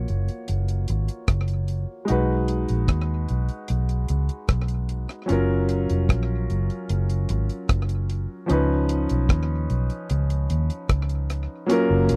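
A straight 4/4 groove at 75 BPM sets an unhurried lovers rock reggae pulse, tender and smooth, in F# major. A deep, dry acoustic drum kit carries the rhythm from 0.1 seconds with hi-hat, a tight kick and rim clicks, sitting up front in a close 1970s-style studio sound with little reverb. Beneath it, a vintage electric bass, fingered and foam-muted, gives a dark, round, punchy amped tone between E#1 and D#2, the loudest of the parts. A clear concert grand piano supplies accompaniment through the middle register, its natural tone and long sustain colouring chords that move from F#maj7 to B6, back to F#maj7 and on to C#9. The short passage is cut from a longer piece, with all three parts playing through to its end at 12.2 seconds.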